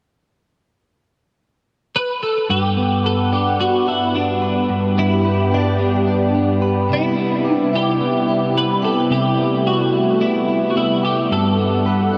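Soaked in a huge, dreamy ambient reverb, this floating, blissful dream pop excerpt in G major at 109 BPM opens with a bright, twangy twelve-string electric guitar melody at 2.0 s, wrapped in ensemble chorus and tape echo; a slightly broken-up electric guitar joins at 2.5 s with compressed, picked arpeggios through analog chorus and tape echo, and a smooth, warbling analog pad of detuned sawtooth tones slowly swells in at 2.9 s under chorus, all three sitting up front as the chords drift from Gmaj7 to Cmaj7 and back.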